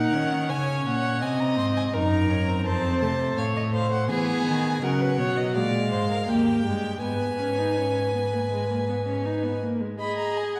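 The first violin carries the melody high above the quartet, played by a single bowed player with vibrato, a soft attack, expressive phrasing and gliding portamento between notes. Beneath it, the second violin holds a smooth, even second line. The viola's rich, vibrato-laden accompaniment fills the middle, and the cello, sitting up front, supplies a rich, smooth bass before it drops out at 9.6 s. This solemn, contemplative baroque-style fugue for string quartet moves in a steady, straight four, passing through shifting harmonies and settling into a minor chord at 7.0 s. The group is heard from further back in a concert hall, wrapped in a generous, wet reverb, and the passage is cut from a longer piece, ending at 10.6 s.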